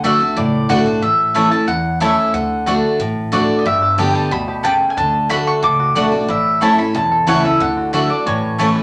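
A mandolin melody and a picked steel-string acoustic guitar open this bluegrass excerpt together, both up front, with the guitar sounding bright and full-bodied like a dreadnought and the lead mandolin woody and double-strung. Beneath them, a second, brighter mandolin adds stabs, and a pizzicato upright bass with gut strings supplies a dark, thumpy low end. At 3.7 seconds a fingerpicked banjo joins in the background with a twangy, percussive second melody line. The mood is virtuosic and driving at a brisk 182 BPM in a straight 4/4, moving through chords of D, A and Gadd9. A club reverb gives the ensemble a short, wet sense of room.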